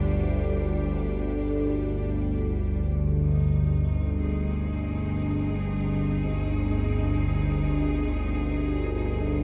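Vast and ominous, this dark ambient drone fragment sets an up-front, evolving analog drone of detuned sawtooth and pulse tones, thickened with chorus and phaser, in the low register beneath a quieter, lush bowed cello section whose intense, vibrato-rich sustained chords shift at 2.9 seconds and fade out over the 9.4-second span, the mix steeped in a huge ambient reverb and the warbly pitch drift of worn cassette tape.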